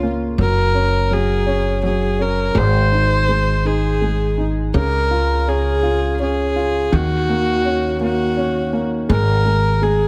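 A slow, swaying 6/8 lilt at 55 BPM carries this heartfelt pop ballad in Db major, with chords moving from Gb through Ab, Db and Ebm7 to a suspended Absus2 at 9.1 seconds. Up front, a single bowed viola sings the melody with an airy sul tasto tone, light vibrato and a soft attack, touched by delay, while a dark, mellow upright piano, slightly detuned and vintage in character, fills in the accompaniment. A thumpy pizzicato upright bass with a woody, dark tone anchors the low end, all set in an intimate small room with light reverb.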